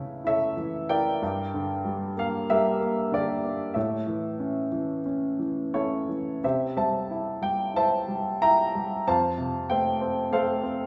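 Relaxed and sunny, this short classical piece for solo piano moves at about 92 BPM in 4/4, with uneven beats and a loose rubato feel that lets the phrases breathe. A single upright piano carries everything, its woody, warm tone set up front and spanning a range from F2 to Bb5. The harmony drifts from A to G minor, returns to A, then settles through C toward F, which arrives at 9.1 seconds. A wet recital-hall reverb with a 1.7-second decay surrounds the instrument, alongside the gentle ambience of a small room within a church or concert hall. Tuned slightly low to A4 = 439 Hz, the fragment lasts 10.9 seconds and is drawn from a longer work.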